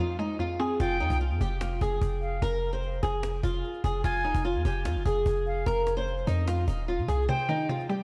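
Dark and menacing, this half-time trap cut opens with a fingerpicked flamenco guitar melody drenched in lush chorus and diffuse delay over a woody, round synth pluck and a barely audible warbly tape-like pad, before a boomy 808-style bass, a snappy cajon set back in the mix and an airy, reedy silver flute line enter at 0.8 s, all floating in a dreamy hall-reverb haze until the kick drops out at 7.3 s.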